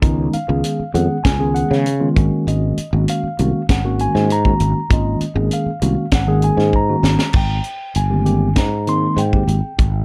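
A growly, punchy fretless electric bass sits up front in this electric jazz fusion excerpt, its sustaining tone anchoring a soaring, bright mood in a straight 4/4 feel. Beside it, a mellow tine electric piano plays clean accompaniment through its built-in speakers, moving from Db9sus4 to Ab9sus4 before settling on Abmaj9 at 7.3 seconds. A tight funk drum kit, recorded naturally in a small room, drives the groove with hi-hat, a high-tuned snare, a compact kick and crash cymbal, and it marks the return of the opening section with a fill from 6.7 seconds. All three parts sit close and present, with the bass and electric piano both carrying a warm character and the bass sounding direct. Light reverb and a dark, warm production round out the whole.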